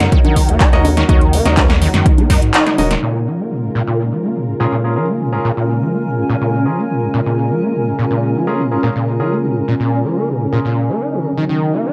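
A straight acid house groove opens this trippy, raw cut from a longer piece, driven by a dry, punchy, overdriven electronic kick up front and an analog drum machine with a punchy snare, handclaps, congas and metallic, tape-warm hats in a short room. A squelchy, gritty sawtooth acid bass riff with a resonant filter pluck sits up front, distorted and saturated, with chorus and tape echo, while a deep, thick sine sub bass pumps beneath it. Above, a smooth, warbling vintage pad holds sustained chords in the background, and a cloudy granular pad drifts in blurred, evolving layers with its own reverb, both pumping with the sidechain. Clear, polished baby grand piano stabs drift through tape echo, and after the kick drops out at 2.5 seconds alongside a band accent, the rhythm section falls away at 3.0 seconds as a filter sweep moves across the piano over the pads and acid line. The harmony moves between Ebm7 and Bbm7 in a dark, warm production with a moderate studio ambience.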